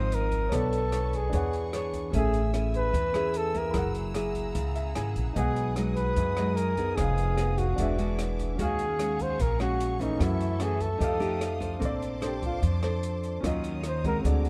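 Breezy and romantic, this 149 BPM bossa nova features an up-front mellow flugelhorn with scooped notes carrying the melody over fingerpicked nylon-string guitar, woody, growly pizzicato upright bass, a clear concert grand piano in the background with a fill at 4.6 seconds, a distant, lush bowed violin section holding sustained chords, and a dark, smooth jazz drum kit on hi-hat, boomy kick and rim click, in a dry, close-miked sound, with the flugelhorn taking a solo from 11.8 seconds.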